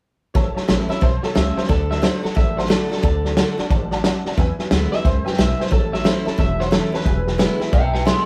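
Retro and rollicking, this brief rockabilly snippet cut from a longer piece swings at 179 BPM in A major, with a muffled, up-front vintage drum kit and thumpy pizzicato upright bass under a twangy, slightly broken-up electric guitar melody that enters at 0.9 seconds, while a bright picked acoustic guitar with finger squeak and a detuned, jangly honky-tonk upright piano sit in the background of a live-room sound with light reverb, moving through A, D and E7.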